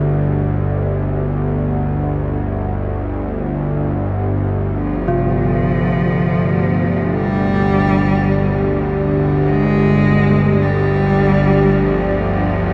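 Drenched in a huge, cavernous reverb, this desolate dark ambient drone drifts in free time, cut from a longer piece. A deep, full-bodied pad with chorus fades in over a tense, string-like bowed drone held low under a G5 chord, and at 4.8 seconds a smooth, rich solo cello enters with vibrato and delay. From 5.1 seconds a very quiet gamelan-type bronze metallophone adds ringing, metallic arpeggios on C3.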